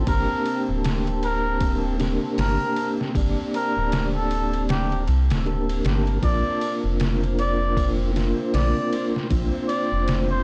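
Trip hop with a dark, hypnotic mood, this short cut from a longer piece moves at an unhurried pace with a swung sixteenth-note feel, shifting from a Gmadd9 chord to Bb at 6.2 seconds. A round analog bass sits up front, deep and sustained with a fast attack, while a mellow, flute-like tonewheel organ plays accompaniment through a fast rotary speaker and tremolo. Behind them, a moody sawtooth pad with a sub octave holds long chords in the background, softened by chorus and its own reverb. From 0.1 seconds a trumpet with a cup mute carries the solo melody, soft and veiled in a jazz style, trailed by tape echo. The sampler-style drum kit of kick, snare, hi-hat and ride sounds pitched down, muffled and overdriven, with a thumpy kick, as if re-recorded in a small room, and the whole recording has a dry, gritty cassette character.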